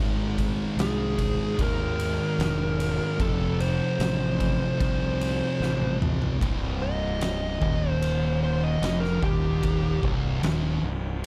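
Stoner and doom metal at a hypnotic, heavy 75 BPM in C minor, this short cut from a longer piece rides a thick, double-tracked fuzz guitar riff and a growly, overdriven fingered bass over an oversized low-tuned kit with a boomy kick, fat snare, dark cymbals and toms in a pumping big room, while a compressed fuzz lead guitar with slapback echo enters at 0.8 seconds, and after a drum fill at 5.6 seconds it takes a solo from 6.4 seconds as the chords move from Ab and F to Cm, all in a dark, warm studio production with reverb.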